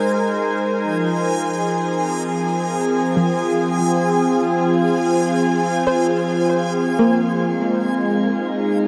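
A warm, chorused analog pad holds sustained chords up front from the start, joined at once by a soft, round pluck tracing dark arpeggios through a diffuse ambient delay and a bright, reversed granular texture on a high Ab, in a melancholic, reflective ambient excerpt at 72 BPM that moves from Ab to Fm7 and returns to Ab at 7.5 s, where the texture stops, the whole scene bathed in a wet shimmer reverb with a long tail.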